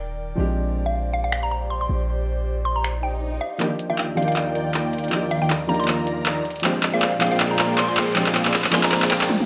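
Lush and bright, this future bass excerpt at 158 BPM in Eb major moves with a swung half-time feel, as a boxy concert grand piano with 12-bit sampler grit and a breathy, chorused pad carry Bb13 and Ebmaj7 chords over a boomy 808-style bass that stops at 3.4 seconds, while a hollow, bouncy square pluck with chorus and digital delay sings the melody, a layered dubstep kit with metallic hats, snaps, claps and toms drives up front from 1.3 seconds, a very quiet swell and riser rises beneath, and from 3.6 seconds a fat, detuned sawtooth polysynth riff with cassette tape colour and a filter sweep leads a build-up with a drum fill, all bathed in wet digital room reverb.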